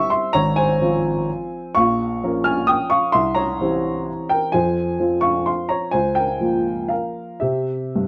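An upright piano carries this short classical waltz on its own, its woody, natural tone sitting up front across the 8.1 seconds. The mood is wistful and bittersweet, with a rubato feel that lets the three-beat pulse breathe and stretch. The harmony moves through minor chords and settles on a major one, reaching C at 3.1 seconds and again at 7.4 seconds, which gives the phrase a lingering, unresolved ache. The piano spans from deep bass notes up into its high register, all within one continuous passage. A moderate studio reverb adds a modest sense of space, while the dark, warm production keeps the top end rounded and soft. The clip is cut from a longer piece and ends mid-flow.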